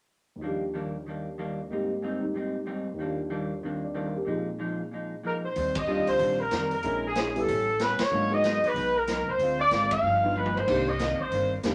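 Swinging and joyful, this brisk big band swing excerpt in Eb major at 187 BPM opens with a dark, deep-bassed grand piano and a clean, picked hollow-body electric guitar comping over rich jazz chords, before a mellow, tight saxophone section with a soft attack and vibrato takes the melody at 5.3 seconds, joined by woody pizzicato upright bass and a distant, roomy drum kit with a punchy kick, while the band hits accents and the drums add a short fill at 10.4 seconds, all in a wet studio ambience.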